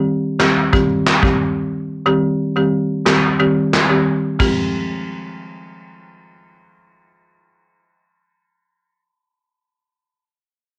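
A woody, rustic folk marimba struck with medium hard mallets carries the accompaniment through this tough, sultry dancehall excerpt in F minor at 90 BPM, its dry, boxy tone tinted by cassette tape, while a vintage brush drum kit with a punchy kick, handclaps, snare and dark crash cymbal sits up front from 0.4 to 4.6 seconds, the pair heard in moderate booth ambience on a home cassette recording as the harmony moves from Cm to Fmadd9.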